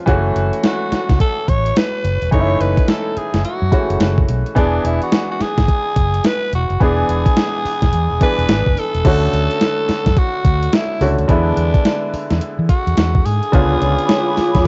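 New jack swing R&B with a slick, bouncy feel at 107 BPM, cut from a longer piece, where a crisp, overdriven 8-bit drum machine with a thumpy kick sits up front under a round, punchy fingered bass and short-sustained bright grand piano chords moving from F#m7 through E7 and Dmaj7, while a breathy, raspy tenor saxophone growls the melody from 0.7 seconds and a detuned sawtooth pad eases in softly on a C#7b9 at 13.5 seconds, all with the dulled top of a home cassette recording.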